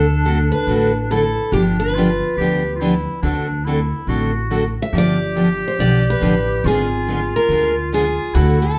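A picked steel-string acoustic guitar with a bright edge and audible finger squeak carries the melody in this playful, charming jazz manouche swing excerpt at 141 BPM, joined by a punchy, vintage-toned clarinet with light vibrato on a second line, a second dreadnought guitar with fresh strings providing accompaniment, and a woody, thumpy pizzicato upright bass on gut strings, all set in a wet club reverb as if heard from further back in the room while the harmony moves from D7 to G7 and on to G#dim7 at 6.6 seconds.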